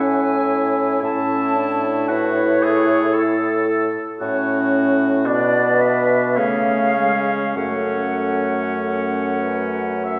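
In a rubato triple metre, this tender, lyrical slow movement for wind quintet sets a pure, silvery concert flute with expressive vibrato and a crisp attack singing the melody over a roomy oboe second line, warm horn and background clarinet accompaniment, and an up-front bassoon bass with light vibrato, all heard from further back in a reverberant concert hall, in a brief fragment of a longer piece.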